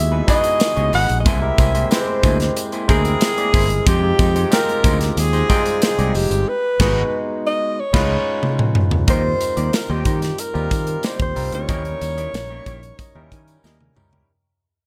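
A breathy alto saxophone carries the melody up front, its subtone voice shaded with light vibrato and scooped notes in a jazz style, over a glossy, upbeat slice of polished 1980s jazz-funk pop at 92 BPM in a straight 4/4, centred on Eb major. Beneath it, a barky tine electric piano comps through a combo amp with lush chorus, joined by a clean semi-hollow electric guitar riff, also chorused, that sits in the background. A growly fingered electric bass stays bright and up front, while a modern studio drum kit with a tight kick, a medium-tuned snare, hi-hat, crash and toms drives alongside a jingly, very quiet tambourine. The harmony moves through rich extended chords such as Emaj7, Fm9 and Db9, and the band hits a shared accent capped by a drum fill just before 9.1 seconds, where the music begins to fade out on Eb6 and Eb7b9. In the closing seconds the electric piano adds a fill from 12.3 seconds, a final drum fill rounds things off, and light reverb gives the whole a sheen as this cut from a longer piece slips away.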